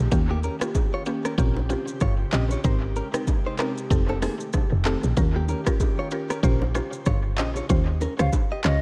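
This sultry, hypnotic afrobeats excerpt opens with a round, bright mallet-like synth pluck carrying chorus and analog delay, an airy, breathy pad holding soft sustained chords in the background, and a woody, punchy log drum bass sitting up front. The afro-pop drum kit arrives almost at once with a deep kick, metallic hi-hats, handclaps, rim clicks and shaker in a swung sixteenth-note feel, joined by very quiet, vintage-toned congas and bongos. A clean, compressed electric guitar recorded direct picks out a riff from 0.3 seconds, its notes trailed by delay. The harmony circles through rich seventh and ninth chords like Eb7, Bbm69 and Abmaj7, and the pad drops away at 7.7 seconds as a new section begins on Eb13. At 8.2 seconds a pure, hollow concert flute enters with tongued notes and vibrato, set in an echo-heavy mix with light reverb.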